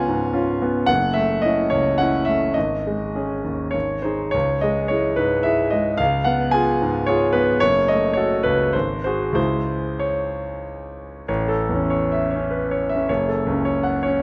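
Bathed in a wet recital hall reverb, this short romantic character piece for solo piano features a clear, up-front concert grand with deep bass and a smooth, vintage tone, moving with rubato in triple time through bittersweet, stormy minor-key harmony before shifting at 11.3 seconds to a new section that opens on an A major chord, as if lifted from a longer work.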